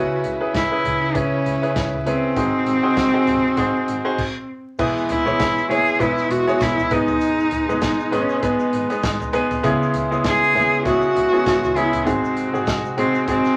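Warm and hopeful, this short piano-driven pop passage moves with a gentle swing in four, cut from a longer piece. A bowed cello carries the melody up front, its tone focused with a smooth top and a touch of vibrato, while a clear concert grand piano plays accompaniment with deep bass and short sustain. Behind them, a lush studio string section holds even, bowed chords, and a rich double bass, also bowed, sits in the background. An airy, acoustic country drum kit with a punchy kick and medium-tuned snare uses hi-hat, crash, toms, kick and snare. The band breaks for a brief stop from 4.2 to 4.8 seconds, after which a grainy, bright tube shaker joins very quietly, as the harmony moves from C#m7 and G#7 through E and G#m, all set in a moderate studio room with a layer of vinyl crackle.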